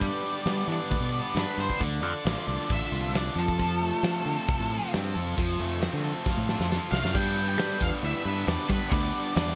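A straight 4/4 pulse at 135 BPM drives this upbeat, jangly indie rock excerpt in G mixolydian, where a loose, fat-snared drum kit with gated reverb and a growling overdriven fingered bass push under a double-tracked distorted guitar riff and a dark octave-fuzz lead melody, a very quiet swirling phased string machine holds vintage sustained chords over a G, Dm, F progression, a drum fill arrives at 6.3 seconds, and a clean tine electric piano slips in with a second line at 6.9 seconds, all within a bright 1980s-style digital production with small-room ambience.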